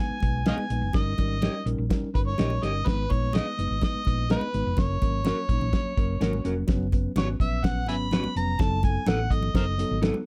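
Under a light reverb, a cloth-damped, thuddy drum kit with a fat snare and a vintage 12-bit sampler grit drives this danceable 1960s-style soul groove in straight 4/4. A round hollow-body bass and a mellow tine electric piano heard through its built-in speakers support it, with slightly broken-up guitar stabs from a small old amp and damped congas in the background. Out front, an overdriven, gritty harmonica carries the melody with tongue slaps, scooped notes and light vibrato, as the harmony moves from G#m to F#sus4 at 6.7 seconds and then to B7/F# at 8.6 seconds.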